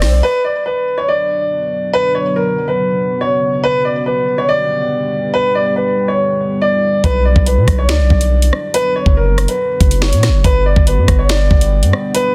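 Drill hip hop with an ominous, tense half-time feel, led by a dark, boxy grand piano melody with delay and long sustain that runs through the whole clip. A moody, detuned ambient pad with chorus and reverb joins at 1.0 s, and after a brief opening hit the drill kit and a deep sine 808 bass return up front at 7.0 s, the kit bringing a knocking kick, a sharp soft-clipped snare, metallic hats, rim clicks and finger snaps. The overall mix is dry, dense and heavily limited.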